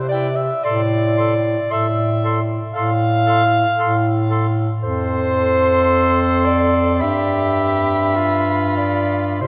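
Serene and lyrical, this short classical excerpt for a single-reed quartet drifts at a slow, rubato pace between 46 and 59 BPM in 4/4, moving through C, F/A, F and G. A mellow, smooth-topped bass clarinet and a clear, punchy alto saxophone sit up front from the opening, while a bright soprano saxophone carries the high melody with light vibrato and a clear tenor saxophone adds soft-edged accompaniment, also with light vibrato. The reeds, with the soprano and alto close-miked, bloom into a cathedral-like reverb with a 5.3-second tail, giving the ensemble a spacious, church-hall glow.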